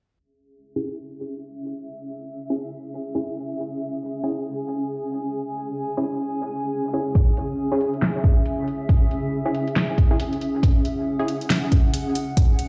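A half-time 4/4 groove at 138 BPM, swung on the sixteenths, sets this brooding, meditative deep dubstep passage in C# minor, resting on a single C#m chord throughout. A muted, detuned dub chord stab opens at 0.8 seconds with quick, decaying plucks coloured by chorus and dub echo, while a filter sweep moves across it for the whole stretch. At 0.9 seconds a granular cloud pad arrives up front, its blurred, wave-folded unison tones swelling in slowly and hanging on with a long release inside their own built-in reverb. The drums come in at 7.2 seconds: a deep, tape-warm electronic kick sits prominently in the mix, joined by a deep house kit with a fat snare and metallic hi-hats, both treated with studio reverb. The whole mix sounds as if played on a big sound system in a bare room, with a moderate echo chamber, large reverb and a low-pass filter softening the top end of this section cut from a longer piece.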